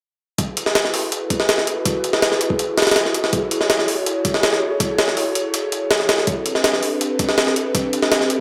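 A straight 4/4 jungle groove at 163 BPM drives this atmospheric, nostalgic drum and bass excerpt in F# minor. The sampler-style kit sits up front, compressed, pitched up and gritty, with a thumpy kick, a high-tuned snare and a tape-warm character, re-recorded in a large room. Beneath it, an airy, breathy pad sustains soft, detuned chords from 0.4 to 8.4 seconds, with chorus and vintage 12-bit grit, moving from F#m11 to Am11 at 6.3 seconds, all set in a moderate echo chamber reverb.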